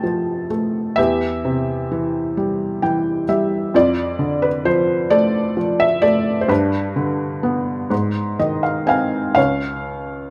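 Classical solo piano, calm and tender, unfolds in 6/8 with a free, rubato feel in this short passage cut from a longer piece. A felt-muted upright piano carries everything alone, ranging from a deep Db2 up to A5 across its 10.3 seconds. Its tone is soft, mellow, warm and intimate, with a short sustain, a thin felt character and audible action noise, and the instrument sits up front with a natural sound. Brief fills arrive at 2.4 and 7.9 seconds, and the harmony shifts from F and C/E to Dm/F, G and finally Ab. Close, detailed microphones capture the piano inside a moderate recital-hall reverb.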